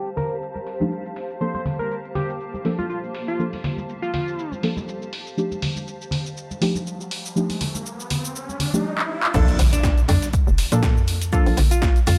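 A sunny deep house excerpt in Bb major at 121 BPM with a 16th-note swing, opening on a bright, cloudy granular pad with sidechain pumping, a punchy overdriven analog drum machine, congas with a thin-skinned live-room sound, and deep mellow chord stabs warbling through chorus and tape echo, while a detuned, up-front plucky unison lead carries the melody from 1.4 to 4.5 seconds. A filter sweep and a riser build toward a drum fill, and at 9.3 seconds the drop lands with an impact, a hollow, bouncy FM bass, an overdriven electronic kick, a very quiet gritty breakbeat sampler-style kit and a dark, clean hollow-body jazz guitar melody with tape echo. The chords move between F13 and Bbmaj7 under light reverb and a low-pass filter.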